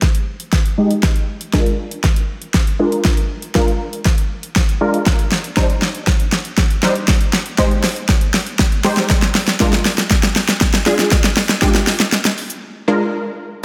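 Up-front electronic pop drums lead this driving, energetic dance-pop build-up at 119 BPM, with a punchy kick, fat snare, bright hats and shaker rolling through a continuous fill until a break at 12.6 seconds. Beneath them, a detuned sawtooth unison pluck with a noise layer and wave-folded edge carries the chords from Abmaj7 through Bb7 and Cmadd9, pumping under sidechain with ensemble chorus, slapback echo and a filter sweep. A lush 2.0-second hall reverb gives the short cut from a longer piece a big arena sound.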